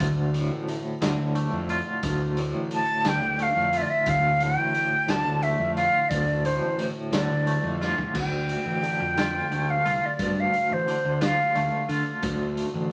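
A twangy, compressed electric guitar riff with tremolo, a punchy fuzz-overdriven picked bass and a raw garage drum kit with a punchy kick and rolled-off top open this hypnotic, trippy psychedelic rock passage in D minor at 59 BPM in 6/8, cut from a longer piece. A breathy, reedy concert flute with vibrato enters up front at 2.7 seconds, and after a drum fill at 7.8 seconds it takes a solo from 8.1 seconds, all set in wet studio reverb over vinyl crackle.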